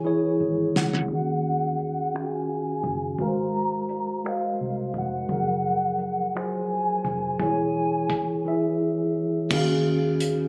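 This slow six-eight R&B piece, cut from a longer work, moves at 57 BPM in Eb dorian with a yearning, late-night mood. A mellow tine electric piano carries the harmony through Ebm11, Ab13, Gbmaj9 and E6, sounding clean and up front through its built-in speakers. Over it, a hollow, woody synth lead with a clarinet-like character sings a soft, sustained melody with vibrato, chorus and a slapback echo. Underneath sits a vintage muted fingered electric bass, dark, round and punchy, while a damped 70s drum kit enters at 0.8 s with a drum fill, then carries a fat snare, tight kick, hi-hat, finger snaps and dark cymbals. A filter sweep runs through the main section, and a silent gap falls from 8.5 to 9.5 s. The whole mix has a phone-in-the-room quality, with an echo chamber, club reverb and a low-pass filter.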